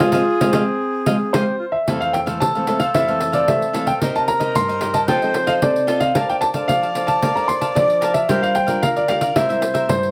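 A grand piano with deep bass, set up front in a plate reverb, carries the melody in this bittersweet, nostalgic samba and choro in F major at 112 BPM, while an airy baroque flute with a crisp attack and lifted highs plays a second line. Alongside them, a mellow picked cavaquinho and a fingerpicked classical nylon-string guitar share the accompaniment, and a jingly, dry pandeiro struck with hard hands supplies the percussion. The band opens on an accent over Fm7 before the harmony moves to Fmaj7 at 1.9 seconds, all heard in a moderate studio room.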